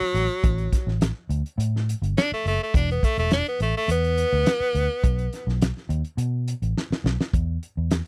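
An edgy tenor saxophone leads this brooding, soulful soul-blues excerpt at a straight, moderate pace, its forceful, vibrato-laden solo sitting up front over dark, round, foam-muted fingered electric bass and a tight, pumping acoustic kit with a fat snare and rolled-off top. The harmony moves from F#m to E5 before a pause in the chords, and the saxophone stops at 5.6 s while bass and drums carry on. A drum fill at 6.8 s leads back to E5 in a dry, close-sounding mix.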